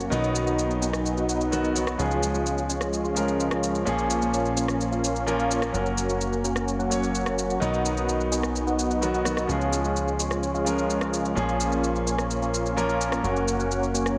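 A straight 4/4 pulse at 128 BPM, carried by a layered electronic shaker and rim click, drives this uplifting, triumphant festival progressive house passage in D-flat mixolydian, cycling through Cb, Db, Bbm and Gb across its 14.2 seconds. A brilliant, up-front grand piano with audible action noise and dub echo plays accompaniment beside a huge riff of detuned sawtooth supersaw chords shaped by a low-pass filter and dub echo. Underneath, a fat, thick analog bass holds the low end while a slow-attack unison pad with chorus sustains chords in the background, all bathed in a lush hall reverb.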